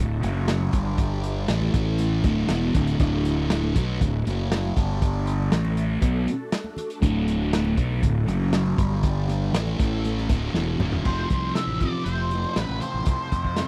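A double-tracked fuzz guitar riff drives this trippy, hazy psychedelic rock excerpt at 119 BPM in D mixolydian, over a growly, overdriven fingered bass, a crunchy, gritty breakbeat kit with a punchy kick and rolled-off top, very quiet damped congas, and a swirling phased string machine holding sustained chords in the background, until a dark octave-fuzz lead guitar with wah and tape echo enters at 11.0 s, at the tail of a drum fill and as the harmony moves to Fmaj7, in a dry, close 1970s-style studio sound.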